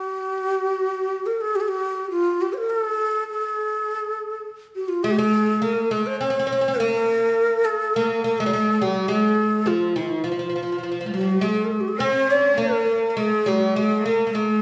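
The recording rings in a wet recital hall with a 1.6-second decay, as a breathy, mellow ney carries the melody of this warm, festive Arabic maqam piece at 104 BPM in 3/4, joined at 5.0 seconds by a bright, woody, plectrum-plucked oud on a second line and at 11.0 seconds by a clear, floating bowed cello section, in an excerpt cut from a longer piece.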